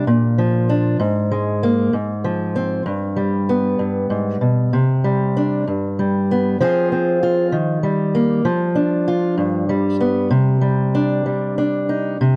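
Reflective and melancholic, this brief folk fragment cut from a longer piece features a lone fingerpicked acoustic archtop guitar, warm and up front in a dry, close 1970s-style studio sound, moving in a straight 6/8 through shifting chords from Bb and Absus2 to a closing Cmadd9 by 10.3 seconds.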